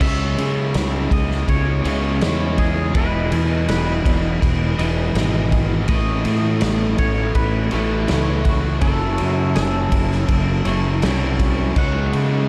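A dreamy shoegaze and dream pop excerpt in 4/4 at 82 BPM opens with the full band at once, drifting through C#m7, Emaj7, Aadd9 and F#m7 with a blissful, wistful glow. Up front, a fuzz-laden fingered bass sounds round and punchy, while a raw garage drum kit in a bright stone room brings a punchy kick, a medium-tuned snare, and crash and ride cymbals with a saturated, gritty character and a rolled-off top; the drums stop at 12.3 seconds. Behind them sit two picked rhythm guitars playing riffs, one a dark, thick fuzz guitar with distortion and analog chorus, the other a bright, overdriven, double-tracked guitar. A clean, twangy fingered guitar carries the melody with subtle chorus and tape echo. A second twangy guitar, scooped and clean, plays a riff through reverse reverb. The whole mix is soaked in a huge ambient reverb, giving the piece its hazy, floating depth.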